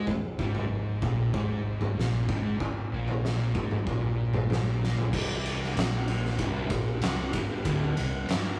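A straight 4/4 pulse at 95 BPM drives this brooding, ominous stoner and doom metal passage, cut from a longer piece, with an oversized low-tuned drum kit sitting up front: punchy kick, fat snare, dark cymbals and toms, all saturated and gritty. Two thick fuzz guitars play a low riff, one dark and distorted in the background, the other very quiet, while a growly, overdriven fingered bass adds fuzz beneath them over a rootless Fmadd11. A drum fill at 4.8 seconds leads to a shift onto C5 at 5.1 seconds, all captured in a rough rehearsal-room recording with tube saturation and moderate reverb.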